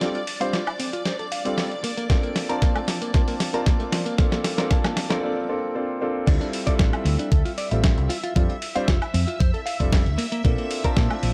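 A thumpy, tape-warm electronic kick sits up front in this sleek, cosmic nu-disco excerpt at 115 BPM in straight 4/4, arriving at 2.1 s. Beneath it, a gritty, compressed sampler-style soul kit with a medium-tuned snare, hi-hat, crash and woodblock plays a drum fill through the build-up until 5.2 s, followed by a brief break before the drop at 6.3 s. A round, punchy fingered electric bass sits in the background with sidechain pumping and a high-pass filter, while a bright, clean direct-recorded guitar picks a compressed riff through analog chorus, a low-pass filter and tape echo. A grand piano with short sustain adds pumping, filtered, echoed accompaniment, and a lush vintage string machine with a sawtooth sub-octave tone holds slow-attack chords under ensemble chorus. The harmony moves through F6, Bbmaj9 and Dm11 before returning to F6 and Bbmaj7, all framed by light reverb in a dark production.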